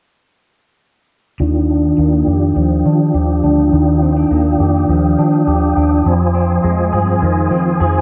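A straight 4/4 pulse at 103 BPM carries this hazy, ethereal dream pop excerpt. From 1.4 seconds a flute-like tonewheel organ with chorus vibrato and fast rotary speaker holds sustained chords, a dark semi-hollow electric guitar with ensemble chorus and delay plays arpeggios, and a round, foam-muted fingered bass sits up front, all moving from Ebmaj9 to Fm7 at 6.1 seconds beneath a filter sweep in a wet recital hall reverb.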